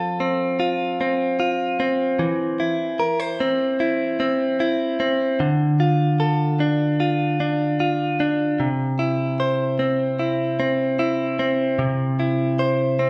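A clean, picked electric guitar, recorded direct, compressed and up front, plays alone through this tender, emotional 13-second pop fragment at 75 BPM in straight 4/4, moving from F to C/E, Dm and C across a C3-to-C5 range, tuned to A4 = 445 Hz and bathed in a lush 1.3-second large-studio reverb.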